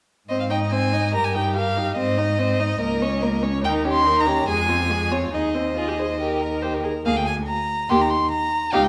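At 0.3 s a string quartet begins together in a quick, cheerful classical-period movement in Ab major, moving at 143 BPM in a straight 4/4 and tuned to A4 = 438 Hz. The first violin carries the melody up front and close, its clear, smooth tone shaded with vibrato as it sings between Db5 and C6. Beneath it, a more distant second violin adds a second line, the viola fills in the accompaniment from nearby, and the cello anchors the bass between Db2 and Ab2 with a focused sound that sits forward in the balance. These three lower parts share a rich, bowed tone with vibrato, each played by a single musician, while the second violin and viola keep their lines smooth and even. The harmony moves lively through Ab, Eb/G, Bbm/Db, Eb7 and Fm before turning toward Eb by way of Bb7/D. A moderate recital hall reverb surrounds the quartet in this brief cut from a longer piece, which stops at 8.9 s.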